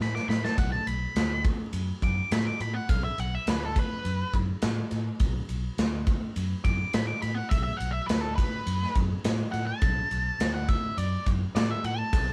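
A drum fill on a big rock kit opens this brooding, smoky excerpt of blues rock with a southern rock edge, while an octave-fuzz lead guitar plays a solo from the very first moment that runs the full 12.3 seconds. The guitar sits up front with a dark, distorted, picked tone, its melody ranging from A4 up to D6 over a steady B minor chord. Underneath, a fingered electric bass adds an amped, growly low end between B1 and A2. The acoustic drums, heard in a big room, bring a punchy kick, a medium-tuned snare and bright ride cymbal, holding a straight 4/4 at 104 BPM. The trio sounds like a band playing live together in one room, with light reverb and a layer of vinyl crackle, and the recording is a section cut from a longer performance.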